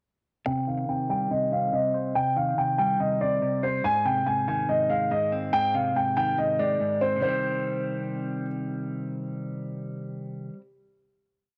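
This is a short, ominous piece of drill hip hop at 142 BPM in 4/4 with a half-time feel, set in C minor and tuned to A4 = 442 Hz. From 0.5 seconds a dark, mellow baby grand piano carries a looping melody, repeated like a sampled loop, its long sustain softened by a low-pass filter and trailed by analog delay. Beneath it, a clean, fingered electric guitar plays a compressed, scooped pedal-note arpeggio in eighths, also repeated like a sample and colored by a low-pass filter and cassette tape. Both parts sit up front over a menacing breakdown that moves from C minor to A-flat under a filter sweep, before the music settles on a final C minor chord at 7.2 seconds. The piano drops out at 8.5 seconds while the guitar rings on, and moderate spring reverb lends the lo-fi home cassette recording a dark, menacing air.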